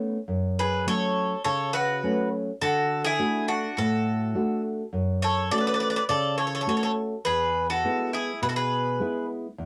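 A dark, woody nylon-string guitar with old strings, thumb-plucked and up front in a deep classical voice, opens this hopeful, sunny Greek folk fragment at 103 BPM in a straight 4/4, joined at 0.6 s by a metallic, up-front bouzouki carrying the melody on double strings with some octave-doubled courses and a bright bowl-back mandolin picking a second line, all three heard through cassette tape in a modest home booth as the chords move from F#m to D, back to F#m and on to E.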